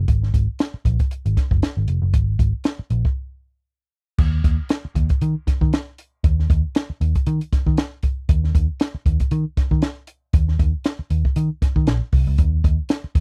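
A muted, picked electric bass opens this playful, funky cut from a longer piece. The bass has a dark, round, foam-muted tone through an amp, and it ranges from F1 to Eb3. A compact cocktail drum kit joins almost at once, played acoustically with a punchy kick, a high-tuned snare, hi-hat, and a crash cymbal, its cymbals sounding dark. The groove sits at 117 BPM in 4/4 with a light sixteenth-note swing, and both parts sit up front in a dry, close, 1970s-style studio sound. A break falls at 3.2 seconds, and a new section begins at 4.2 seconds and runs to the end at 13.2 seconds.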